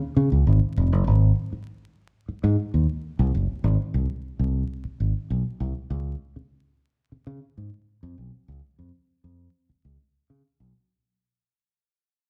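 Fingered electric bass plays alone from 0.2 to 10.7 seconds in this playful, strutting funk excerpt at 99 BPM in straight 4/4, its punchy, amped tone sitting up front and spanning F1 to Db3. The sound carries a moderate large-studio reverb, the feel of a band playing live in one room, and a layer of vinyl crackle. The whole clip is a fade-out, cut from a longer piece and tuned to A4 = 439 Hz.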